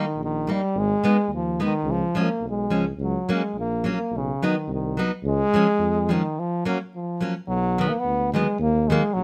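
A clear, up-front euphonium carries the melody in a classical style with vibrato through this short, jolly alpine folk dance cut from a longer piece. Beside it, a fingerpicked, plugged-in steel-string acoustic guitar supplies warm, concert-style accompaniment, also placed up front. A mellow tuba joins at 0.2 seconds on the bass line, played with light vibrato and sitting a little lower in the mix. The band moves at a bouncy 107 BPM in 2/4 with a slight swing, in F# major, tuned a touch below standard pitch, and light reverb gives the trio a modest sense of space. Chords shift roughly every second, from D# through G#m, C# and B before settling on F#, and a break at 6.4 seconds leads into a new section at 7.5 seconds that turns to B and D#m before the recording stops.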